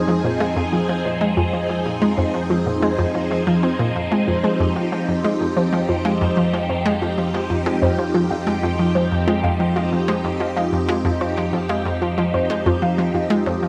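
A swirling, phased string machine holds sustained chords up front alongside a bright, round analog pluck riff with delay, while a resonant, evolving drone sits low in the background. This is hypnotic, expansive ambient space music in a straight 4/4, cut from a longer piece and resting on a single Fm7 chord. From 0.2 seconds a mellow, lo-fi, warbling pluck spins delayed arpeggios behind them, its filter sweeping throughout, all bathed in a long, wet plate reverb.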